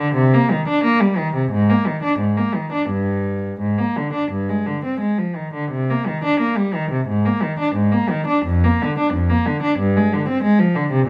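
A moderate studio reverb gives a sense of a large room around a single bowed cello, whose nasal, reedy gut-string tone has a period-style character. This grave yet flowing classical passage, cut from a longer baroque-style suite movement in 4/4, moves with a rubato pulse of about 82-95 BPM. The solo cello spans F2 to D4 and plays throughout the 11.1 seconds.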